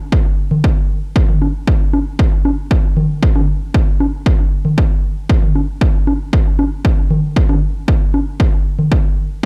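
Deep and hazy, this straight 4/4 techno excerpt at 116 BPM sets a punchy, overdriven analog electronic kick drum up front, re-recorded in a large room, from 0.1 seconds, joined at 0.5 seconds by overdriven analog electronic congas and bongos, re-recorded in a small room and treated with sidechain pumping and dub echo, all captured as a dry, gritty hardware recording on cassette tape with little reverb.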